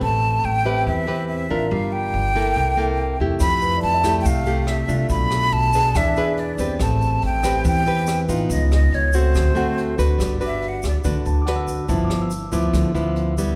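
Bossa nova with a sunny, breezy mood, in which a breathy, up-front flute with vibrato carries the melody until 11.0 s over fingerpicked classical nylon-string guitar, a warm grand piano in the background and woody pizzicato upright bass, while brushed drums with a boomy kick and a grainy tube shaker join at 3.4 s, all set in the moderate reverb of a church or concert hall.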